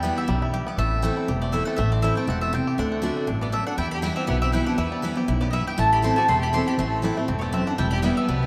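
Bluegrass with a driving, lonesome mood and a lightly swung feel, cut from a longer piece and heard in a vast, echoing space drenched in cathedral-like reverb. A twangy, percussive banjo played with fingerpicks and a bright, double-strung mandolin carry the melody together from the start, the mandolin sitting higher and a little louder. Underneath, a picked steel-string acoustic guitar supplies the accompaniment, while a thumpy, woody upright bass with gut strings anchors the low end; both of these sit up front in the mix. At 3.4 seconds a single bowed fiddle enters with a second line, its clear, biting tone and light vibrato adding intensity alongside the rest of the band. The long, wet reverb tail turns the acoustic band into something haunting and distant, heightening the lonesome character.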